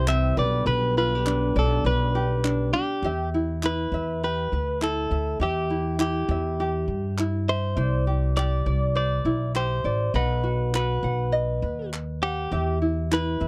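A dry, close recording with a 1970s studio feel frames this carefree, heartfelt acoustic pop excerpt at 101 BPM in 4/4, with a 16th-note swing and tuning at A4 = 436 Hz. A clean, compressed electric guitar recorded direct carries the melody up front, over a light, fingerpicked tenor ukulele, a woody pizzicato upright bass with steel strings, and crisp, close group handclaps. A dark, distant brass ensemble holds roomy classical-style chords in the background only until 3.0 s, as the harmony moves from G/B to Em, Cadd9 and B before settling back on Em.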